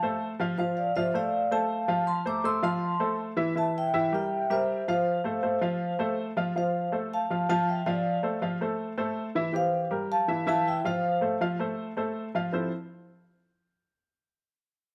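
Latin music with a danceable, festive mood, heard in a short cut from a longer piece in straight 4/4. A vibraphone played with soft mallets carries the melody, its metallic, ringing tone softened into something mellow and airy, with a slow motor vibrato adding shimmer as it sits up front. Beneath it, an upright piano supplies the accompaniment with a woody, slightly detuned character and short sustain, also placed close and present. The harmony moves through familiar changes, including a rootless Bbmaj7sus2 and a turn to Dm7 before settling back home and closing on Fmaj7 at 12.5 seconds. The vibraphone drops out at 11.4 seconds and the piano at 12.7 seconds. Close, detailed microphones and light reverb capture the texture of both instruments.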